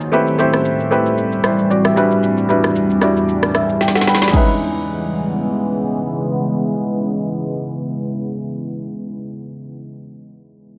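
Dark, warm production steeped in digital room reverb frames this late-night, soulful amapiano excerpt at 114 BPM with a swung 16th-note feel, where a clear, worn grand piano with short sustain plays up-front accompaniment over a deep, moody pad of detuned sawtooth and sine tones with a sub octave, slow attack, chorus and sidechain pumping, while a layered electronic deep house kit of deep kick, woody snare, rim click, shaker and crash rides a filter sweep into piano and drum fills before the harmony moves from Am7 and Em7 to C#m7 at 4.3 seconds and the drums stop at 4.5 seconds.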